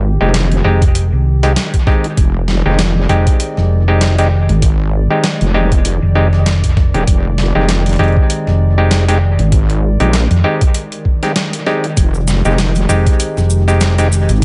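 An echo-heavy mix with light digital ambience and a dulled top end frames this gritty, funky glitch hop excerpt at 98 BPM in 4/4, swinging its sixteenths in F dorian over a single Fm9 chord. Up front, a thumpy, compressed sampler-style kick recorded in a large room anchors the groove, while a boom bap sampler-style kit adds hi-hat and a medium-tuned snare, touched with analog delay. Two basses share the low end: a heavy, detuned wobble bass with chorus and tube saturation, and a dark, round hollow-body short-scale fingered electric bass that sits just as close. An overdriven clav pushed through a combo amp throws stringy, percussive stabs that pump with the sidechain and trail analog delay. Behind them a nostalgic, lo-fi tape-like pad warbles through sustained chords, carrying chorus and its own reverb and also pumping. At 12.0 seconds a grainy, bright cabasa from a small room joins for the closing stretch, echoed by analog delay.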